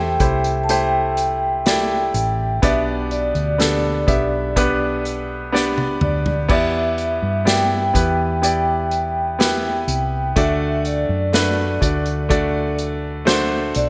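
A bright, 1980s-style digital sheen frames this short melancholic pop ballad, set in a small room with light reverb. It moves at a slow 62 BPM in 4/4 with a straight feel in E minor, passing through C6, G/B, Em7 and D. A mellow vibraphone played with soft mallets carries the heartbroken melody up high, its ringing metallic tone close-miked and dry, with a medium motor vibrato. A clear concert grand piano sits up front with the accompaniment, its deep low end and short sustain sounding present and polished, while a dark, round hollow-body electric bass, fingered and amped, anchors the bottom. An airy acoustic drum kit played with bundle sticks enters at 0.2 s, its punchy kick, medium-tuned snare, hi-hat, toms and crash cymbal treated with gated reverb, and a drum fill arrives between 5.5 and 6.5 s.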